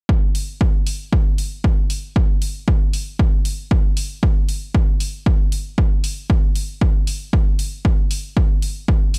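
A 4/4 deep house groove at 116 BPM with a 55% swing on the sixteenths gives this short cut from a longer piece a moody, smooth feel. An analog, punchy kick sits up front from 0.1 seconds, overdriven and given studio reverb with the air of a large room. Dark, layered electronic hi-hats enter at 0.3 seconds well beneath it, also touched with studio reverb, all within a dry, gritty hardware sound.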